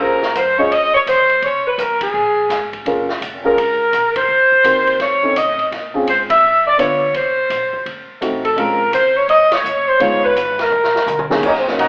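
A mellow saxophone section opens this swinging, brassy big band jazz excerpt, carrying the melody with vibrato and a soft attack over a dark grand piano, a woody pizzicato upright bass and a punchy big-band drum kit. The piano drops out almost at once and returns at 2.9 seconds, adding short-sustained, mellow accompaniment beneath a harmony of minor ninth, major ninth, altered dominant and suspended chords. The kit's ride, hi-hat, crash, snare, kick and toms drive a firm swing feel, punctuated by full-band accents and a drum fill toward the close. Just as the saxophones finish, a trombone section slips in at 11.5 seconds as a second line, and tight trumpet stabs follow in the background at 11.8 seconds. The band plays live in one room, heard through a boxy telephone-like filter and a generous, wet studio reverb.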